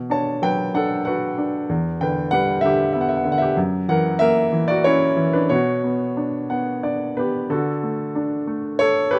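A baby grand piano, warm and natural with a short sustain, sits up front in this brooding, lyrical classical solo, moving in a rubato triple metre. The close, detailed sound carries a light touch of reverb, and the harmony moves through B minor chords before a piano fill at 6.2 seconds leads into a new section on a D chord at 7.5 seconds. This brief, moody passage is cut from a longer piece.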